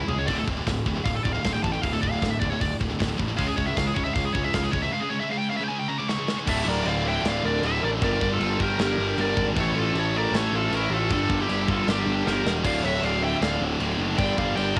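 A bright, high-gain lead guitar opens this dark, heavy metal excerpt with a solo in D harmonic minor that reaches up to D6, carried over a straight 4/4 pulse at 156 BPM. Beneath it, three picked, distorted rhythm guitars grind out a riff in the background, two of them coloured by a cassette-tape grit and one double-tracked and very quiet. A growly, overdriven fuzz bass sits up front. A tight acoustic kit with a medium-tuned snare and bright cymbals, including a china, drives things with fills. At 6.5 seconds the music drops into half time, and a second, darker-toned lead guitar joins with a distorted line. A very quiet, lush bowed string section adds sustained chords that move from Dm through Gm and A. Little reverb and a home cassette recording give the whole piece a dry, raw, close sound.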